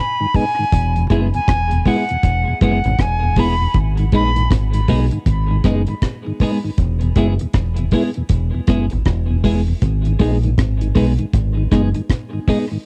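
Heard through a home cassette recording with light reverb, this meditative dub reggae excerpt moves at 79 BPM in G# minor with a swung sixteenth feel, shifting between G# minor and E. An airy, reedy concert flute with vibrato opens the piece, steeped in dub echo and plate reverb, and falls silent at 4.5 seconds, while a mellow tonewheel organ with key click turns through a slow rotary speaker beneath it. A dry drum kit with a tight kick, hi-hat and rim click and a round, punchy fingered bass sit up front, joined from 1.1 seconds by a compressed, picked clean electric guitar coated in lush chorus, dub echo and plate reverb.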